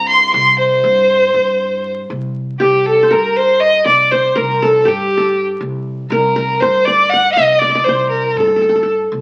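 Turkish instrumental in 7/8 at 239 BPM counted in eighths, set in makam nikriz on C, with a soulful, hypnotic mood, cut from a longer piece and heard through the crackle of a very old 78 rpm record with wet reverb. A smooth, vibrato-rich solo violin carries the melody up front from G4 to C6, over a woody pizzicato upright bass and a dark, bowed cello section drone on C2 that sits in the background until 2.2 seconds. From 2.6 seconds, a mellow, plectrum-plucked qanun with a bright edge adds a second line alongside the violin.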